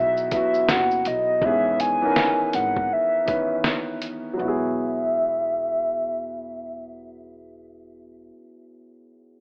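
A rough home-demo recording with an AM-radio haze and light reverb frames this cosy, nostalgic, swung lo-fi hip hop fragment, where a detuned, vibrato-laden square-and-sawtooth lead carries the melody over soft, felt-muted upright piano chords with a cassette-tape tint, a woody, growly pizzicato upright bass and a muffled, pitched-down sampler-style drum kit with thumpy kick and fat snare that drops out at 4.2 s, while a filter sweep runs through the opening 4.4 s.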